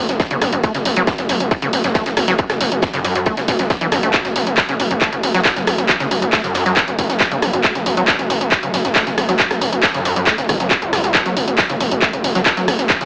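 Driving peak-time techno with a hypnotic pull, built on an overdriven, distorted kick, a gritty, aggressive synth bass up front with sidechain pumping, and a punchy analog drum machine whose claps, hi-hats and rim clicks sit tape-warm beside a very quiet, airy studio kit of ride and snare, while a squelchy, resonant acid saw bass under a filter sweep and lush chorus and delay and a swarming, detuned, granular drone with built-in reverb hover in the background, all through an AM-radio sound in this short cut from a longer track.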